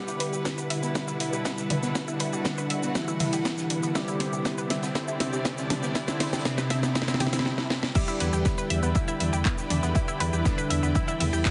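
Melodic techno at 120 BPM in E minor, melancholic and dramatic, in which a juicy resonant sweep polysynth carries the melody over sustained chords from a smooth rich symphonic string section and a woody texture from a dark studio string section, brassy analog pad stabs with tremolo and tape echo, and lush unison pluck arpeggios, all pumping to the sidechain, while a house drum kit with a cracking snare, a very quiet loose indie drum kit and a punchy electronic kick drum from 0.5 s drive a build-up of filter sweeps and a faint riser into a drop at 8.0 s, shortly after which a deep, rumbling dark detuned saw bass enters, all heard through a heavily compressed, radio-like sound.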